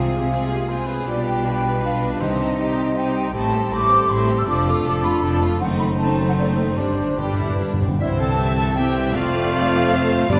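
A graceful, cheerful excerpt from a quick classical-period movement for symphony orchestra, in 3/4 at 157 BPM with a rubato feel, opening in C minor before turning to C major at 3.4 s. A close, expressive chamber violin section carries the melody over second lines from an airy large flute ensemble, a mellow cor anglais, a dark, roomy clarinet and a focused second violin section, while a smooth, distant viola section accompanies, a French horn section holds sustained chords, and a lush cello section and a close chamber double bass section anchor the bass. Dry, close timpani punctuate the opening and play a fill from 6.8 s, a tight trumpet section adds soft-attack stabs from 8.0 s, and the whole sits in a wet scoring-stage reverb.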